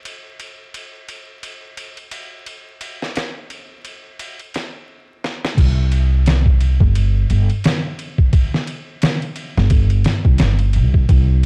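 A swung 87 BPM trip hop groove in 4/4 opens the excerpt, carried by a gritty, pitched-down sampler-style drum kit with a thumpy kick, medium-tuned snare, ride and crash, its filtered cymbals and compressed hits sitting up front, and a drum fill from 5.2 to 5.6 seconds leads into the second section. At 5.6 seconds a woody, pizzicato upright bass with steel strings enters up front in the mix, moving between G1 and C2 and deepening the brooding, melancholic mood. The dry, dark production, tuned slightly flat to A4 = 435 Hz, is dusted with vinyl crackle.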